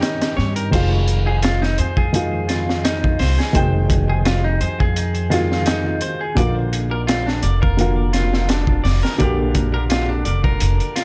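Trip hop in F minor at 85 BPM with a lightly swung 16th feel, this dark, hypnotic excerpt from a longer piece sets a soft, intimate felt-muted upright piano, with thin felt, short sustain and audible action noise, treated with harmonic tremolo and tape echo, beside bright, compressed arpeggios from a clean picked electric guitar also fed through tape echo. Beneath them runs a gritty, saturated breakbeat kit placed up front, with a tight kick, high-tuned snare, hi-hat and dark crash cymbals, while a woody, growly pizzicato upright bass enters at 0.4 s beneath chords moving from Eb7 to Fm7 at 0.7 s and Bb at 6.4 s, all in a small room with an echo-heavy mix.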